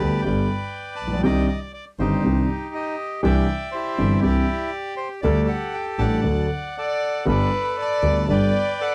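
Dry and close, this short tango fragment has the sound of a 1970s-style studio, with a modest booth ambience around it. The feel is playful and elegant, moving at 120 BPM in 4/4 with a rubato give, in G major, and it is cut from a longer piece. A reedy, airy bandoneon carries the melody throughout the 8.9 seconds. A warm, intimate concert grand piano sits up front with deep bass, a vintage smoothness and audible action noise. A single bowed double bass adds a biting, intense bottom with light vibrato. Over the fragment the harmony moves from G through Cmadd9, Cadd9, Dsus4 and D to settle on Gadd9. At 6.8 seconds a bowed violin enters up front as a second line, expressive and soft in attack, with vibrato and portamento.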